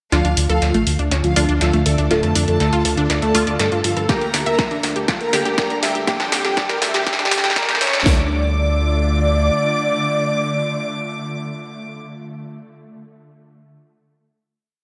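This short, cinematic and driving melodic techno piece in D minor opens at 121 BPM with a thick, detuned sawtooth lead carrying a repeating riff, doubled an octave higher by a floating, distant violin section, while a bright, sequenced unison pluck, muted dub chord stabs with phaser and a round analog bass playing sixteenth notes all start together. A punchy analog drum machine supplies programmed hats, rim clicks and a backbeat snare with gated reverb, and from 4.1 seconds a house kit adds a four-on-the-floor kick and cracking snare as the chords move from D minor to G minor. An evolving, morphing wavetable pad slips in beneath, followed at 1.3 seconds by a very quiet, swarming granular drone, and sidechain pumping breathes through the lead, strings, pad, pluck, stabs and bass. The first eight seconds form a build-up with a drum fill and filter sweeps on the lead and pad, after which the drums drop out and the music settles onto a final D minor chord. 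The production has a bright 1980s digital sheen, bathed in a lush hall reverb.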